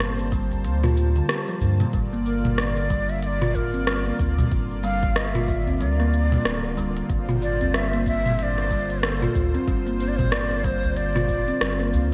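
A breathy, reedy low ney carries the melody from 2.3 seconds, its end-blown tone bright and expressive with vibrato and tongued notes, trailed by a digital delay. This is a mystical, earthy slice of organic downtempo in 4/4 with a swung sixteenth-note feel, cut from a longer piece and moving from Gmadd9 to Bb. Underneath, a woody kalimba plays short thumb-plucked arpeggios through its own digital delay. A smooth, detuned sawtooth analog pad holds soft-attack chords with chorus, tremolo and sidechain pumping, while a round sine sub bass sits deep and mellow. Up front, an overdriven electronic kit with crisp hats, cabasa, rim click and toms rings through gated reverb in a large room. Further back, a tape-toned deep kick and a close, dry acoustic udu ground the groove. The whole mix is bathed in a lush hall reverb with a glossy 1980s-style digital sheen.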